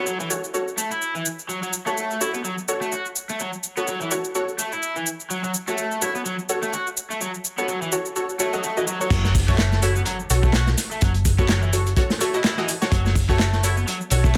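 A swung 126 BPM breakbeat groove in F# minor opens with a bright, double-tracked garage guitar riff and punchy, detuned sawtooth orchestra-hit-like synth stabs, both trailing dub echo, joined a split second later by an overdriven electronic house kit of handclaps, metallic hi-hats and shaker. A very quiet swell and impact rises from 8.3 seconds. At 9.1 seconds the drop lands with a crunchy, gritty acoustic breakbeat kit with a punchy kick and dark cymbals, plus a round, up-front hollow-body picked bass, giving this cut from a longer piece a swaggering, funky strut.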